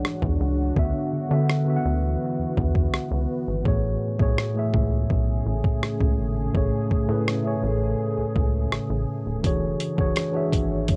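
A mellow tine electric piano, a deep, chorus-washed ambient pad and a gritty, compressed sampler-style drum kit of thumpy kick, hi-hat and rim click open this smooth, tender contemporary R&B fragment in straight 4/4, with a rubbery square-wave bass entering at 0.2 seconds. The piano, drums and bass sit up front while the slow-blooming, detuned pad holds sustained chords behind them over E13, D69 and Amaj7, returning to E13 at 9.4 seconds as a break gives way. The whole piece carries the intimate character of a home cassette recording in a booth with moderate ambience.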